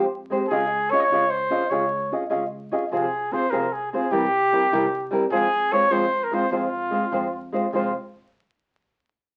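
In a 6/8 at 100 BPM, this short romantic and festive mariachi passage in F minor puts a mellow, classical-style trumpet up front singing the melody with vibrato and a soft attack over a dark, thumb-plucked flamenco guitar and a woody pizzicato upright bass in the background, all heard through a small, reverberant room and the crackle of a very old 78 rpm record.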